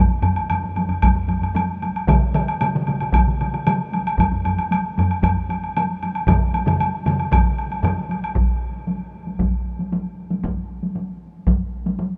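A straight 4/4 pulse at 115 BPM drives this ceremonial, powerful excerpt of Japanese traditional taiko drumming: four layers of taiko ensemble, struck with heavy and hard sticks, enter in turn from 0.1 seconds, one close and up front among others set in small and live rooms, beside a woody, vintage, band-limited woodblock that stops at 8.4 seconds as a new section begins, the whole sounding within a moderate, huge ambient reverb.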